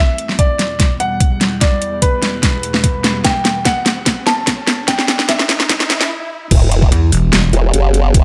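Heavy wobble dubstep in a half-time feel, menacing and weighty, this excerpt opens with a warm grand piano melody carrying tape echo over a bright, morphing wavetable pad with phaser and sidechain pumping, while a very quiet riser, swell and sub drop build the tension. Up-front electronic drums bring a knocking kick, huge snare and metallic hats through a drum fill and filter sweep, leading into a brief break before the drop. At 6.5 seconds the piano has stopped and a formant-sweep wobble bass arrives with chorus and overdrive, joined briefly by a saturated, pulsing pluck wobble bass for a heavy, compressed low end.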